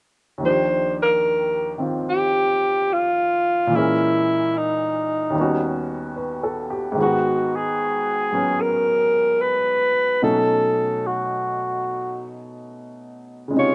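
A clear, woody upright piano opens at 0.4 s, with a breathy alto saxophone carrying the melody a moment later in this late-night, romantic jazz ballad at a slow, swung pace. The saxophone sits up front with a vintage subtone, scooped notes and a slapback echo, while the piano accompanies beneath it through rich chords such as Ebmaj9, Abm9 and B9. The sound is dry with little reverb, and the fragment is cut from a longer piece, ending at 13.7 s.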